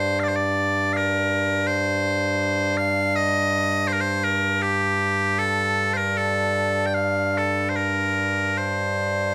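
The rhythm is loose and rubato, a three-four lilt drifting between 74 and 84 BPM rather than holding a strict pulse. This is a mournful, haunting Celtic folk passage in G minor, cut from a longer piece and lasting just over 9 seconds. A lone set of bagpipes carries it from 0.0 to 9.3 s, sounding loud, bright and up front, with a continuous tone spanning G2 to G5. Their piercing voice fills the space on its own, giving the phrases a lamenting weight. A moderate studio reverb and the feel of a live room lend the pipes a natural sense of air around them.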